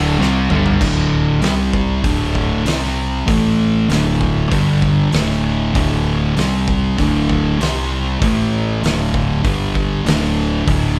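A bright, double-tracked distorted electric guitar sits up front for only the first 0.8 seconds of this sludgy, hypnotic stoner and doom metal excerpt, as an oversized low-tuned drum kit with dark cymbals, a fat snare and a punchy kick rolls a fill into a heavy, straight 4/4 riff carried by two dark, thick fuzz guitars (one in the background), a growly, overdriven fingered bass and the drums, all cycling through D5, C5, A5 and G5 with light reverb, like a band playing live in one room.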